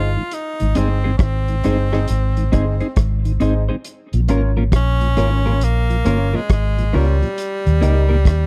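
Laid-back and unhurried, this short roots reggae excerpt sits at 68 BPM in Ab major, with a swung sixteenth-note feel and chords moving from Ab to Bbm to Eb. An edgy, punchy tenor saxophone carries the melody from the start, forceful and close-miked in a pop style with light vibrato and a trail of tape echo. Beneath it, a foam-muted fingered electric bass sits up front with a dark, round, amped tone, joined at 0.3 seconds by a vintage drum kit whose tight kick, hi-hat and rim clicks have a smooth, rolled-off top. A woody upright piano adds open stabs, while a mellow tonewheel organ with key click and slow rotary speaker hums in the background. At 0.8 seconds a clean, compressed electric guitar enters with picked accompaniment, all captured in a dry, close 1970s-style studio sound.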